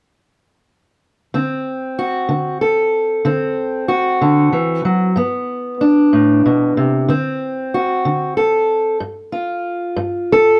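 A dark, up-front fingerpicked steel-string parlour guitar plays alone from 1.3 seconds in this swaggering, gritty acoustic country blues fragment, moving through D7, G and G7 chords in a straight 12/8 with moderate studio reverb before the cut at 10.6 seconds.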